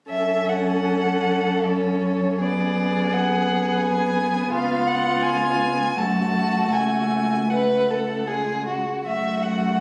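Captured on a phone in the room and set in a moderate scoring-stage reverb, this short cut from a slow romantic string quartet movement unfolds in a rubato triple metre with an elegiac, solemn mood. Two up-front violins share a smooth top: the first, warm in tone, carries the melody, while the second, shadowed and soft in attack, traces a line beneath it; a distant viola supplies the accompaniment and a close, dark cello holds the bass. All four solo players bow expressively with vibrato and portamento, sounding together from 0.1 to 9.8 seconds.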